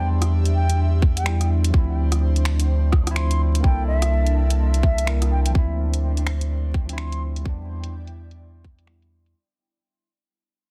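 This short cut from a longer future garage track opens on a hollow, close-miked wooden flute carrying the melody with vibrato and delay, over a barky, worn tine electric piano that sounds slightly out of tune and runs through delay, a low-pass filter and sidechain pumping. Beneath them an airy, breathy pad holds detuned chords with chorus and a slow attack, while a deep, round sine sub bass sits up front, both pumping against the beat. The garage drum kit enters at 0.2 seconds with overdriven finger snaps, filtered hi-hat and rim click, and a tight, overdriven electronic kick joins at 1.0 seconds, giving the 126 BPM groove in D minor its swung, rainy, nocturnal pulse. The harmony moves through Em7, Dm7 and C13 before returning to Dm7 and Em7, and the flute drops out at 7.2 seconds. From 5.5 seconds a filter sweep on the electric piano accompanies a fade-out, all within a dense, heavily limited master with digital ambience and vinyl crackle.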